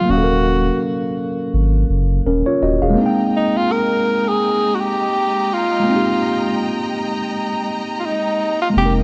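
Light reverb and a small room ambience frame this nostalgic, melancholic hip hop piece at 83 BPM in F minor with a gentle 16th-note swing, where a breathy, subtoned tenor saxophone with light vibrato, scooped notes and tape echo carries the jazz-style melody over a worn, slightly out-of-tune tine electric piano with cassette tape character, a deep, saturated sub bass that drops out at 3.0 seconds and returns at 8.8 seconds, and a lush, bowed studio string section that enters at 3.0 seconds as the chords shift from Ebm11 to Fm11.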